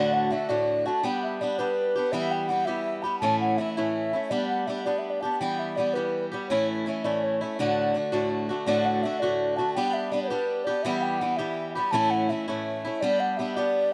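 Celtic folk jig in 6/8 at 110 BPM in D major, bright and rollicking, this short cut from a longer piece moves through a D, G, E minor and A progression that repeats its opening phrase from 8.7 seconds. An airy, hollow wooden flute carries the melody with vibrato, a soft attack and rolled-off highs, bathed in plate reverb. Up front, a picked swing-style acoustic guitar with a boxy, fresh-stringed sparkle supplies the accompaniment, both parts heard throughout in a close, detailed recording with light room reverb.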